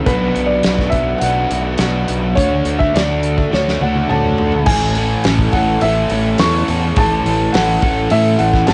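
This home cassette recording sounds hazy and dulled at the top, softened by light reverb, in a dreamy, wistful shoegaze and dream pop vein at 104 BPM in A major, cut from a longer piece. An overdriven semi-hollow guitar carries the riff up front, picked and double-tracked, its hollow-body tone thickened by lush chorus and cassette tape coloring. Beneath it a fingered electric bass sounds bright, growly and punchy through a direct signal, while a loose indie drum kit of tight kick, medium-tuned snare, hi-hat, toms and crash cymbal plays in a small room with a rolled-off top. A felt-muted upright piano sings the melody between B4 and C#6, intimate and mellow with audible action noise, trailed by tape echo. The harmony moves from Bm to Dmaj7, and a drum fill from 3.5 to 4.7 seconds leads into the second section, which settles on Amaj7.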